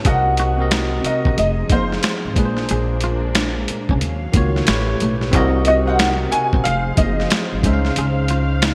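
Late-night and smooth, this short neo-soul R&B excerpt sets a clear, boxy grand piano melody with ensemble chorus over bell-like tine electric piano chords, soft-attack bowed strings in the background, a twangy picked electric guitar line bathed in lush chorus, a woody pizzicato upright bass up front, and a gritty, thumpy boom bap sampler-style kit of kick, snare, hi-hat and finger snaps with gated reverb, all swung on the sixteenths through a moderate hall reverb and bright 1980s-style digital sheen as the chords move from Cm7b5 through Ebm9 and A9 to a closing Dbmaj7 at 7.6 seconds.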